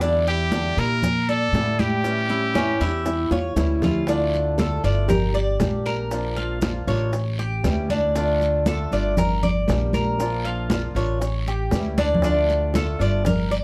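A nasal, straight-muted trumpet leads this sultry, nostalgic Cuban son and guajira cut at 118 BPM, playing a brief jazz-style solo up front from 0.3 to 3.6 seconds over the Em7b5 and A7 chords before the music settles into D harmonic minor at 4.1 seconds. A bright, metallic tres picks arpeggios beside a woody pizzicato upright bass, while a classical nylon-string guitar adds a second line until 6.1 seconds and a boxy, fingerpicked swing-style acoustic guitar supplies accompaniment. Ringing high-tuned congas lead the percussion, with round low bongos, a raspy guiro and grainy maracas sitting in the background, all within a dark production with light reverb and drum fills at 3.3 and 12.0 seconds.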